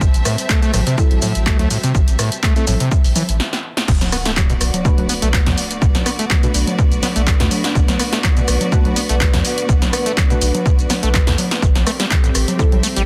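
Acid house at 124 BPM in B phrygian, hypnotic and driving, where a squelchy, resonant sawtooth acid riff with dub echo rides over a thick saturated sub bass, a dry up-front kick, and a punchy tape-warm drum machine of congas, claps, hats, shaker, rim and snare, while a moody detuned pad, lush bowed strings and soft wave-folded chord stabs sit in the background, with the riff, sub, pad and strings pumping under a dense limited master as a fill and stop at 3.4 s give way to a drop with a background impact at 3.9 s.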